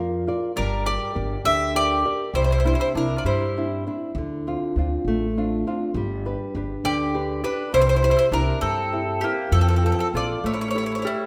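A bright bowl-back mandolin melody and a second mandolin line open this wistful, passionate Italian folk serenade in a straight 6/8 at 67 BPM, over a boxy, fingerpicked nylon-string guitar and a thumpy, dark pizzicato upright bass on gut strings. The picked double-string mandolins drop out at 3.9 seconds, leaving the small, up-front guitar and bass to carry the chords, then return near 6.8 seconds for the rest of this excerpt from a longer piece. The woody lower mandolin sits behind the lead in a resonant recital hall, and the harmony moves from Bb and Gm toward F and a closing A7.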